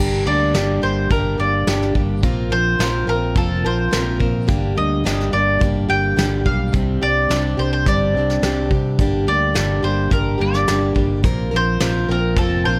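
Wistful and reflective, this short folk rock and heartland rock excerpt in G minor moves at a straight 106 BPM, with an up-front, woody mandolin carrying the melody from 0.3 seconds over a picked plugged-in steel-string acoustic guitar with audible finger squeak, a slightly broken-up electric guitar riff tucked in the background, a round fingered electric bass, and a soft brush drum kit with a fat snare and tight kick, all set in a small room as the chords cycle through Gm, Bbsus2 and Csus2.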